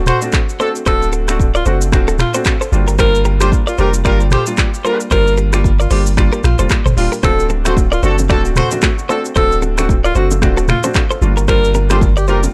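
Mellow and hypnotic, this afrobeats excerpt in G minor moves at 113 BPM with a swung sixteenth feel, circling between D7 and Gm7 over a punchy sine sub bass with a pitch-drop attack and an up-front electronic drum kit of deep kick, metallic hats, snaps, handclaps, rim clicks, shaker and toms. A breathy alto saxophone carries the melody with vibrato and dub echo, joined by a distant, roomy horn section, while a worn concert grand piano with short sustain and a twangy, direct-recorded clean electric guitar riff in the background also trail dub echoes. Soft-handed congas and bongos ring in very quietly from 7.2 seconds, all within a dry, echo-heavy mix.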